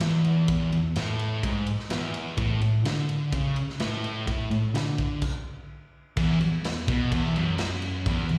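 Swaggering and raw, this short garage rock excerpt in a straight 4/4 is built on a double-tracked fuzz guitar riff, sitting up front and low with distortion and slapback echo. A gritty, punchy acoustic drum kit with a rolled-off top drives it on kick, snare, ride and crash cymbals. It sounds like a live gig heard through the venue's PA in a small room with recital hall reverb, and after a stop from 5.2 to 6.2 seconds the band moves into a new section.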